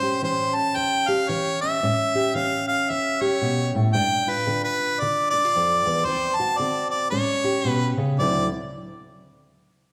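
Swaggering and rollicking, this short cut from a longer acoustic country blues piece swings at 113 BPM in 4/4, with a clear, up-front harmonica playing a jazz-style solo melody full of light vibrato and scooped notes over a dark, fingerpicked steel-string acoustic guitar with audible finger squeaks, both sounding from 0.0 to 8.5 seconds through the lush reverb of a church or concert hall as the chords move from A7 through G5 and D7 before landing on D9 at 8.2 seconds.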